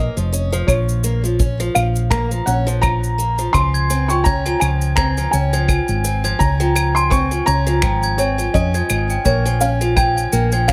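A light reverb frames this short folktronica excerpt, with a playful, hopeful mood at 84 BPM and a gentle swing. A felt-muted upright piano carries the melody with a mellow, intimate, thick-felt tone and audible action noise, over woody, boxy arpeggios from an old ladder-braced acoustic guitar and a round, punchy hollow-body electric bass that sits up front. Cabasa, claves and finger snaps enter at 0.2 seconds and a tight kick at 0.7 seconds, both played with brushes, before a sparkling, bell-like glockenspiel with hard plastic mallets adds a second line at 3.5 seconds as the harmony moves from Gbmaj7/F to Dbmaj7 and Bbm7.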